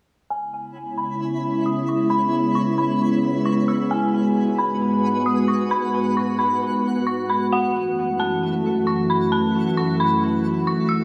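A hazy, ethereal half-time hip hop excerpt in which an eerie, inharmonic detuned synth bell carries the melody from 0.3 seconds through chorus and dub echo, a nostalgic, warbly tape-like pad enters at 0.9 seconds with mellow sustained chords under chorus and its own reverb, and a faint granular texture twinkles with octave-up sparkle from 0.7 seconds, all over a C#m7, G#m7 and F#m7 progression with a filter sweep in an echo-heavy mix with plate reverb and small room ambience.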